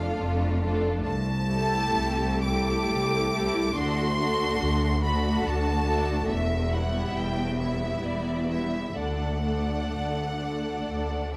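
A classical slow romantic movement for string orchestra, this serene passage in 3/4 moves with a rubato feel and is cut from a longer piece. A clear, smooth violin section carries the melody high above, while a second violin section adds a lush, focused line beneath it. The violas supply a soft-attacked accompaniment marked by expressive portamento, and the cellos sit in the background with a rich bowed tone. Double basses anchor the lowest register and stand slightly forward of the other parts. All five sections play with vibrato throughout the 11.4 seconds, captured by close, detailed microphones in light reverb.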